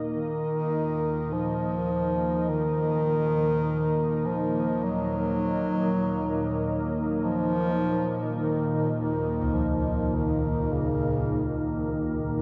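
Dark ambient drone at a slow 51 BPM in Eb minor, this desolate, ominous fragment is cut from a longer piece. A deep, moody pad of detuned sawtooth and sub-octave layers, wave-folded and ring-modulated, holds sustained chords up front with chorus and its own reverb. Beneath it, an organ-like drone of sine and triangle tones sits low with a moving notch and ensemble chorus, fading in across the whole passage. A solo bass clarinet, smooth-topped and classical in style, carries the melody in a narrow low register through tape echo. At 9.4 seconds, bronze gamelan-type bossed gongs struck with padded beaters add soft, round, beating arpeggios on a single low note. The whole recording sits in a huge wet reverb and the worn, warbling pitch drift of old cassette tape.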